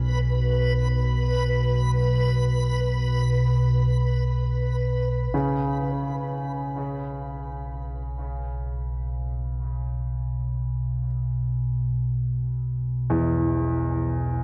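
This dark ambient drone piece unfolds in free time, an ominous, desolate stretch cut from a longer work and set in a huge, wet reverb within a dark production. A deep, rumbling drone runs throughout, its warbling, vintage tone sitting up front between B1 and B2 with slow attack and long release, built on a Bsus2 chord. A clear, polished baby grand piano plays arpeggios from E2 to C#4 across the whole 14.4 seconds, its present tone trailed by diffuse ambient delay. Over the opening, a reversed, swelling texture holds a bright, detuned, granular B4 before falling away at 5.3 seconds. From that point a filter sweep moves across the synth drone, shading the bleak atmosphere as the piano and drone carry on together.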